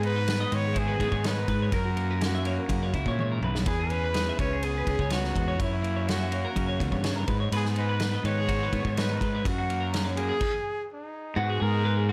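A straight 4/4 pulse at 124 BPM drives this intricate, bright blend of math rock and midwest emo, with a loose, roomy indie kit of dark cymbals and punchy kick playing a fill at 3.2 seconds before a stop at 10.4 seconds. A fuzzy, growly fingered bass sits up front under two twangy twelve-string electric guitars: one plays accompaniment with warbly pitch drift, while the other, further back, picks arpeggios through lush chorus over chords moving from G#m7 through F#7, E6 and C#m7. A close-miked trumpet carries the melody with vibrato, scooped notes and tape echo, set in a dreamy, reverb-soaked mix.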